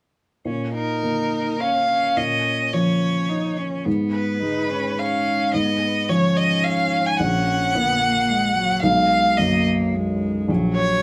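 A room-sounding recording with moderate studio reverb captures a neoclassical trio playing live together, tender and hopeful in a rubato waltz-time lilt, cut from a longer piece. A felt-muted upright piano sits close and intimate, its soft, mellow accompaniment carrying audible action noise, while a rich, focused cello enters with it at 0.5 seconds as a second line. From 0.7 seconds a single bowed violin carries the smooth, even melody with vibrato, drifting over chords that move from A#m through C#7/G# toward F#/A#.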